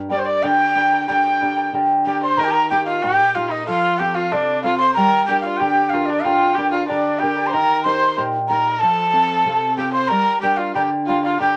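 A breathy, cane-toned quena carries the melody up front with vibrato and tongued notes, while a biting, nasal erhu traces a second line beside it with light vibrato and portamento. Underneath, a shimmering fingerpicked charango and a dark, full-bodied nylon-string guitar supply the accompaniment in G minor at 93 BPM in a straight 2/4, cycling through Gm, Eb and F. This festive yet wistful Andean folk excerpt sits in moderate studio ambience and shifts into a new section at 2.4 seconds.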